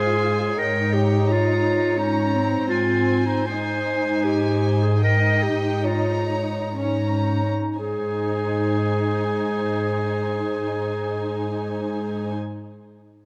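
Warm and lyrical, this slow romantic orchestral excerpt in 3/4 sways with rubato and slows between 1.6 and 7.8 seconds, as a dark, intimate chamber violin section carries the melody above a second, floating violin line and a distant, roomy solo clarinet, while a woody, lush viola section accompanies and an up-front cello section holds a pure bass, the strings all bowed sul tasto and captured by close, detailed microphones in a concert hall's moderate reverb.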